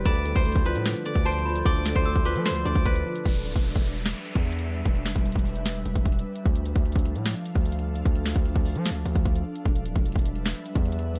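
Eerie and menacing, this half-time trap and hip hop excerpt opens with a silvery, fingerpicked steel-string zither melody carried on tape echo, over a dark, boxy concert grand piano that drops out at 3.3 seconds. An ethereal, detuned pad holds slow-blooming chords throughout, thickened by ensemble chorus and its own reverb, while a metallic, inharmonic FM bell rings briefly in the background with chorus and tape echo. A punchy, heavy 808 bass with a fast attack anchors the low end as the harmony shifts between Dm and Em7. Up front, the trap kit hits hard with a clipped kick, sharp snare, bright hats and crash cymbal. An electronic downlifter sweeps in at 3.3 seconds, and the zither ends at 4.9 seconds, all within a dry, gritty hardware sound.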